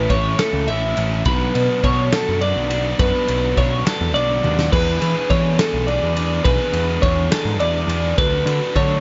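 A bright, twangy twelve-string electric guitar rings up front with clean, compressed arpeggios over a growling, overdriven bass, a double-tracked overdriven guitar riff and a loose indie drum kit with a fat snare, punchy kick and dark cymbals, making this playful, intricate math rock and midwest emo cut in 6/8 at 69 BPM move from A through Bm9, E7sus4 and Dmaj7, with a drum fill at 4.4 seconds, all under light reverb with a slightly dark top end.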